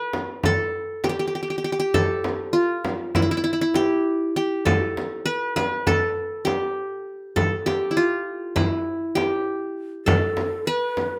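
A bright-edged qanun, plucked with fingerpicks on its triple strings, opens this hypnotic, longing passage from a Turkish makam ensemble piece in 9/8, joined almost at once by an up-front frame drum struck with hard hands in a live room. Near the close, at 10.1 s, a breathy, hollow ney enters as a second line, close-miked and tongued with vibrato, and light reverb wraps the sound as this fragment of a longer work ends at 11.2 s.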